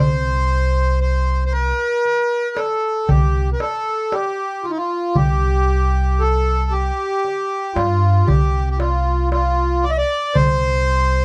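A reedy, up-front accordion with a slow beating shimmer carries the melody in this passionate, stately excerpt of an Arabic maqam ensemble piece in 10/8. Beneath it, a woody pizzicato upright bass with steel strings holds the low end throughout, while a small, high clay-shell darbuka with a natural skin, played with soft hands, enters at 1.5 seconds with a compressed, saturated edge. The dark, warm production is touched with light reverb.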